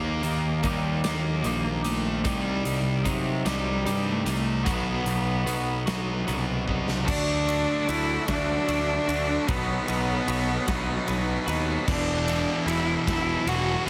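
A bowed cello leads this anthemic, restless quiet-loud alternative rock excerpt, its clear, earthy tone carrying light vibrato, a biting edge and a smooth top as it sings the melody throughout. The piece moves at a slow 50 BPM in 6/8, with chords passing through Eb, Cm and B before shifting to D and B, then settling on an E5 power chord. Up front, a thick, fuzzy distorted guitar plays a riff alongside a growly, overdriven fuzz bass. Behind them, a compressed twelve-string electric guitar picks clean, bright arpeggios until 11.9 seconds. The thick guitar drops out just as a tight, distorted guitar riff enters in the background at 7.1 seconds, and the thick guitar returns at 11.9 seconds. A huge arena drum kit with a punchy kick, fat snare and bright cymbals pumps in a hall-like room, marking the change with a fill, all under light reverb and a heavily compressed, radio-like sound.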